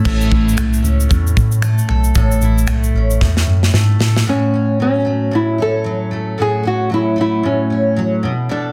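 Acoustic pop at 114 BPM in A major with a sunny, heartfelt mood and a swung sixteenth feel, this excerpt opens on a double-tracked, full-bodied picked steel-string acoustic guitar with audible finger squeak, joined by a mellow, clean tine electric piano holding the bass and an airy, polished studio drum kit of tight kick, medium-tuned snare with soft clipping, shaker, finger snaps and crash, whose fill from 3.2 s leads to 4.3 s, where bass and drums drop away and a dark, fingerpicked nylon-string guitar takes the melody, treated with plate reverb and tape echo, over the acoustic guitar in a dense, heavily limited modern mix.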